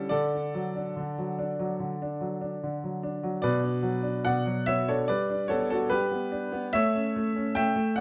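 This is a classical-period piano sonatina in D major, an excerpt cut from a longer piece, with a playful, graceful mood. A solo baby grand piano carries the whole 8 seconds, sounding clear, natural and up front, and ranging from B2 to G5. The tempo sits at a moderate 73 BPM in 4/4, played with an easy rubato that lets the phrasing breathe. The harmony moves from D through B minor at 3.4 seconds and G to A, a simple progression that gives the passage its poised, cheerful character. Moderate studio reverb adds a gentle sense of space, and the production leans dark and warm.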